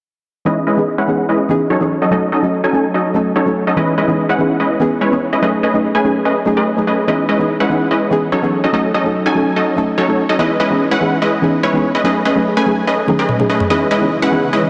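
Opening at 0.5 s, a punchy, detuned supersaw stab carries the riff up front under a low-pass filter sweep and dub echo, while a soft, round pluck with chorus and dub echo supplies dark accompaniment in this bittersweet, lush future bass excerpt at 145 BPM in a half-time feel, cycling through C#m9, D#m7b5 and B13 in C# minor. Overdriven electronic toms break in for a short fill at 13.1 s, and at 14.0 s a shimmering, ethereal pad with chorus and its own reverb enters faintly in the background on a high sustained note. A huge ambient reverb envelops the mix, and the dense, heavily limited modern master keeps it loud and compact.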